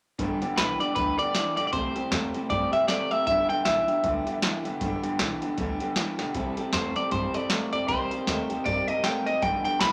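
A twangy, scooped electric lead guitar sits up front at the edge of break-up, carrying the melody high in its range from 0.6 s in this rowdy, retro rockabilly excerpt. Beneath it, a second electric guitar played through a small old amp drives a bright, slightly broken-up riff in the low register, while a picked dreadnought acoustic with fresh strings picks out warm accompaniment in the background. An upright bass adds woody, dark, thumpy pizzicato tones from its gut strings, also set back in the mix, and a soft vintage rhythm box up front supplies a deep kick, crisp snare and metallic hats. The tune swings its eighth notes at 156 BPM in 4/4, in G major, moving between G6 and C6 before turning to Cm7 near the end, with a drum fill at 6.2 s. A moderate large studio reverb gives the whole band a roomy, old-time glow.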